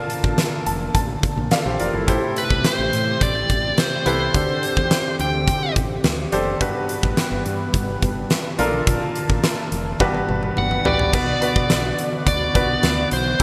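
1980s-style pop at 106 BPM in 4/4, this short excerpt from a longer piece feels dramatic and nostalgic, moving through lush chords such as Bbmaj7, Am7, D7sus4 and Gmaj7 before settling on Bm. A clear, polished concert grand piano carries the accompaniment from the start, opening with a fill between 0.4 and 2.1 seconds, while a brassy, detuned sawtooth pad with chorus and vibrato sustains chords in the background. A huge arena drum kit sits up front with a fat snare, punchy kick, bright cymbals and a pumping room sound, and it plays a fill from 10.0 to 11.1 seconds leading into the next section. Underneath, a woody, round fretless electric bass gives the low end a hollow-body character. A dark, smooth lead guitar with overdrive takes the melody in two phrases, first at 2.4 seconds and again near the end, with a moderate plate reverb wrapping the bright digital production.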